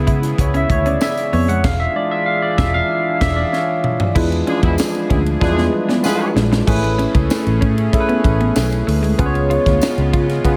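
A straight 4/4 groove at 95 BPM drives this glossy, urban 1980s jazz-funk pop excerpt in A major, where a barky, up-front tine electric piano with lush chorus solos from the start over a shimmering pulse-width pad, a round, foam-muted fingered bass, a tight funk kit with a high-tuned snare and gated reverb, a slightly broken-up guitar riff in the background, jingly tambourine, and a brief vintage horn section with delay and octave doubling appearing at 4.5 seconds, as the chords move from C#m7 through E7b9 to Amaj9 and C#7.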